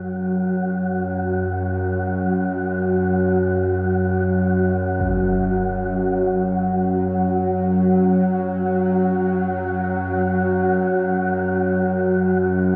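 From the first moment, a string-like, bowed drone and an airy, wind-like tuned noise texture enter together, setting a dark, desolate mood in this excerpt of dark ambient music that drifts in free time. The drone sits low and up front, its tense, sawtooth-edged tone thickened by a noise layer, ring modulation and vibrato, with a slow attack, long release and a filter sweep running across it. Above it, the breathy noise texture hovers an octave higher, sustained and also up front, its sine-based core carrying its own built-in reverb. At 5.0 seconds a huge, dark impact lands briefly, muffled by a low-pass filter. Both sustained layers hold throughout the 12.8 seconds, soaked in an enormous, lingering reverb, while the overall sound stays dusky, with the top end rolled away.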